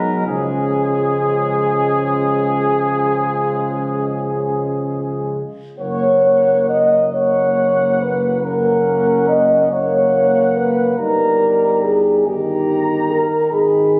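A slow, rubato pulse in 12/8 moves at about 43-48 dotted-quarter beats per minute in this hymn-like classical passage for brass band, cut from a longer piece and set in F# major with a lyrical, warm mood. A mellow solo cornet carries the melody with vibrato and a soft attack, while a French horn section sits up front on a second line with light vibrato and a smooth top. Beneath them, a tight trombone section with a vintage sound and a distant, roomy solo trombone with light vibrato provide background accompaniment, and a dark, punchy tuba anchors the bass. The harmony rests on C# before moving to F# as a new passage opens at 5.8 s, then shifts to D#/G at 11.0 s. A moderate scoring-stage reverb surrounds the group, captured by a phone in the room.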